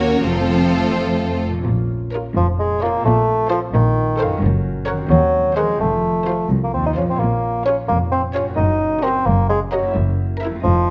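A roomy, lightly vibrato solo bassoon sits up front from 2.4 s in this playful, whimsical cinematic cue in a lilting 6/8, riding over lush bowed violin sections carrying the melody and a second line, focused violas, rich cello and double bass sections on the bass, ringing harp arpeggios, and mellow French horn chords heard only until 1.4 s, all with a magical, quirky air and light reverb.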